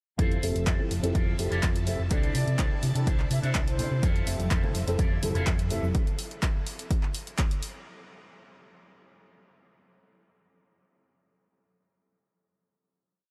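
An overdriven, punchy four-on-the-floor kick drives this sunny, feel-good filtered disco house piece, joined by programmed closed and open hats and a handclap backbeat from an analog drum machine, its hats pumping against the kick. A round, dark hollow-body electric bass plays an octave-jumping line, while a mellow, boxy grand piano with audible action noise plays a rhythmic chord riff in rootless voicings through a phaser. A clean, picked electric guitar with an envelope filter adds a funk chord rhythm, and a vintage sawtooth string machine holds lush, bright sustained chords in the background over a progression that moves from Fmaj7 to C69 and back. A breathy, close-miked flute enters at 1.9 seconds with short phrases trailed by a diffuse ambient delay, and distant shaker and congas from a large room join at 4.0 seconds. The melodic parts drop away near 5.9 seconds, leaving the kick and drum machine to carry on briefly under a light studio reverb, with some lossy compression artefacts in the sound.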